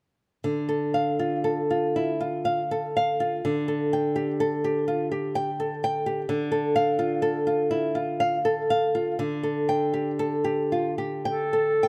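A fingerpicked nylon-string guitar opens this melancholic, elegiac fragment of a romantic duo, its small, intimate tone captured up close with light reverb as it sways in an unhurried, rubato triple metre. Its accompaniment rocks between D minor and a suspended D chord, holding a mournful stillness. At 11.3 seconds a warm, soft-attacked clarinet slips in with a single melody note just before the cut at 11.9 seconds.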